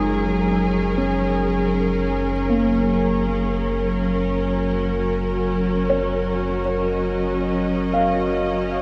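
In free time, this luminous, peaceful ambient fragment in F# major, tuned to A4 = 435 Hz, rests on a single F#maj13 chord, with a dark, woody string section holding sustained chords up front through shimmer reverb, a felt-muted upright piano tracing soft, intimate arpeggios through diffuse delay and shimmer, and a round analog bass sustaining a deep F#1 that fades out across the full 8.8 seconds, all steeped in a cathedral reverb of 5.3 seconds.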